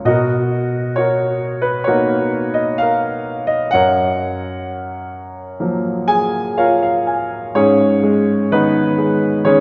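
A clear, up-front concert grand piano plays alone through this tender, peaceful classical fragment, its deep bass and open tone ringing out in a wet church reverb with a long 2.6-second tail. The lyrical line moves in an unhurried rubato over lush major-seventh harmonies, and a piano fill from 6.1 to 7.6 seconds leads into a brief closing passage that turns to a minor chord. The top end is gently rolled off above 7.5 kHz, as if heard from within a resonant hall.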